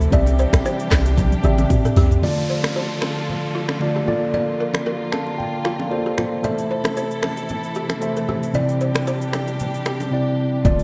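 Soaked in a moderate plate reverb with small room ambience, this dreamy, smooth afrobeats excerpt at 114 BPM has a hypnotic, lightly swung 4/4 feel, moving through Am, Dm, Bbmaj7 and Cadd9. Up front, a mellow tine electric piano carries the accompaniment with a clean tone heard through its built-in speakers and takes a short fill midway, while a dark studio string section plays lush, bowed sul tasto chords with vibrato and sidechain pumping. An electronic, produced afro-pop drum kit with a deep kick and warm hats mixes finger snaps, handclaps, rim clicks, shaker and toms, and ends its opening bars with a fill. A punchy sine sub bass with a pitch-drop attack anchors the start, then falls away at 2.2 s as an electronic downlifter sweeps through and the song opens into its second section. In the background, a woody, buzzing balafon played with soft rubber mallets repeats a dry, boxy riff with delay, alongside bright acoustic congas and bongos in a live room, before a brief silent gap at 10.1 s and a last hit of sub bass.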